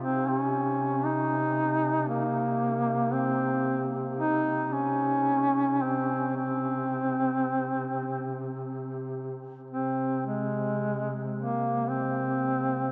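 A mellow duduk melody opens over a low duduk drone on C3. Together they voice a solemn, mournful Caucasian lament in C phrygian, moving in a rubato 3/4 at roughly 53-58 BPM. The up-front lead sings with vibrato, a soft attack and scooped notes, and its smooth top matches the drone's mellow tone. Both ring out in the long, wet decay of a vast cathedral, with a new section arriving at 9.7 s before this fragment of a longer piece cuts off at 12.9 s.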